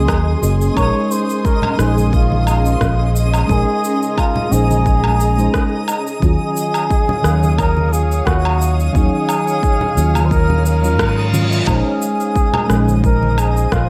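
A bucket-muted trumpet leads this relaxed sunset chillout excerpt, its dark, veiled solo line carrying light vibrato and a tape echo that places it at a roomy distance. Beneath it, a mellow FM electric piano plays a soft, round accompaniment through chorus, phaser and a low-pass filter. An ethereal, airy pad holds sustained harmony with ensemble chorus, tremolo and its own reverb. A fingered electric bass sits up front, punchy and amped, and a faint granular texture adds a sparkling octave-up shimmer high above. The electronic drums arrive at 0.1 seconds, a deep kick and a layered rim click, woodblock and shaker, overdriven and re-recorded in a large room, with very quiet, distant congas entering at 1.6 seconds. A reverse cymbal sounds at 10.8 seconds, leading back to the Bbm11 chord over a smooth swung groove with a touch of reverb overall.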